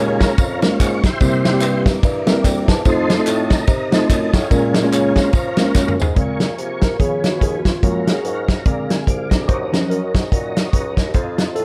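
Solemn and soulful, this short uptempo gospel cut in Bb minor swings at 145 BPM, with a smooth tonewheel organ taking the lead through its fast rotary speaker and chorus vibrato over sustained chords, before a worn, slightly out-of-tune tine electric piano takes over as soloist from 6.2 seconds after dropping a brief fill earlier. Underneath, a distant, roomy bassoon carries the bass line with light vibrato, while an up-front soul drum kit with a tight kick and medium-tuned snare drives the groove and plays a fill into the second half. Compressed, saturated tambourine, tube shaker and group handclaps sit low in the mix until 6.1 seconds, and the whole has a dark production in a small room with light reverb.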